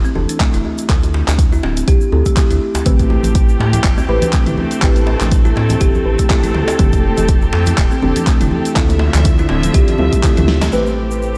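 Earthy and hypnotic, this afro house excerpt moves at 122 BPM with a 16th-note swing, built on a woody, ringing kalimba arpeggio, a round analog bass with sidechain pumping, and a deep, dark chord stab with chorus, phaser and a filter sweep over Dm7 and Am7. An up-front, tape-warm electronic kick and a deep house kit with a fat, filtered snare, hats, toms and handclaps drive the groove, while faint, close hard-hand congas add detail and a cracking djembe and a grainy tube shaker sit in the background. Smooth, bowed chamber strings enter at 2.9 seconds, and a drum fill from 10.0 seconds leads to a band accent at 10.6 seconds.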